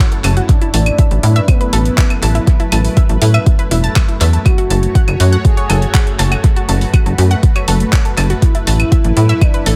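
A dry, echo-heavy mix carries this driving, dark melodic techno excerpt at 121 BPM in 4/4, where an overdriven, deep electronic kick and a tight, punchy sawtooth sequencer bass sit up front alongside a deep house kit of claves, handclaps and hi-hat soaked in overdrive and tape echo. Around them, a thick detuned unison pad holds sustained chords through chorus, phaser and sidechain pumping, while a bright unison pluck spins arpeggios through analog delay and a very quiet, warbling analog drone hums on F#2. From 0.5 seconds a smooth, expressive synth lead with vibrato and a cassette-tape tint sings the melody over chords moving from Asus2 to F#m at 4.5 seconds and back to Asus2.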